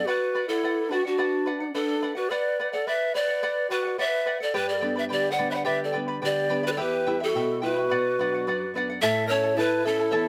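A breathy bamboo pan flute carries the melody up front, its tongued notes touched with chiff, vibrato and a plate reverb, in this earthy, melancholic Andean folk excerpt in B minor at 107 BPM in a straight 2/4. A mellow wooden quena plays an end-blown second line beneath it with a crisp attack and an unsteady feel, while a bright, fingerpicked charango adds up-front accompaniment on shimmering double strings, some of them octave-doubled. A small, woody nylon-string guitar with old strings sounds at the very start and returns at 4.6 s, as the harmony moves from Bm through G and Em, back to Bm, and on to A at 9.0 s.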